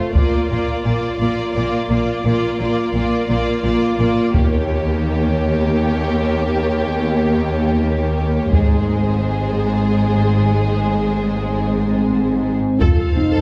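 This cinematic, epic orchestral film score moves at a stately 57 BPM in 6/8, counted in dotted quarters, with a majestic, triumphant mood as it builds over a chord sequence of Bb, Eb7, Ab and finally F. The violins split into two bowed lines: a focused, lush melody with vibrato sits on top, while a second violin line beneath it is a touch more present. The violas fill in the accompaniment with an intense, rich tone. Underneath, even, bowed double basses and a smooth cello section tucked into the background carry the bass. A taiko ensemble struck with hard sticks drives the whole passage with an acoustic small-room punch, and a mellow, tight French horn section arrives at 11.7 s with sustained chords. A wet scoring-stage reverb places the orchestra further back in the room, lending this fragment of a longer piece a grand, spacious sheen.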